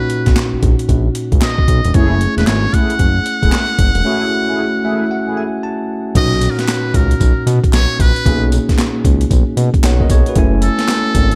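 Bouncy and upbeat, this new jack swing R&B excerpt in B major moves at 114 BPM with a swung feel, as a buzzy, breathy muted trumpet carries the melody over bell-like tine electric piano chords, a gritty, overdriven sampler-style drum kit with thumpy kick and high-tuned snare in gated reverb, a smooth, saturated synth bass up front, crisp group handclaps in the background, and round, detuned synth brass stabs with chorus from 1.9 to 5.4 s, before a break at 4.0 s brings an electric piano fill.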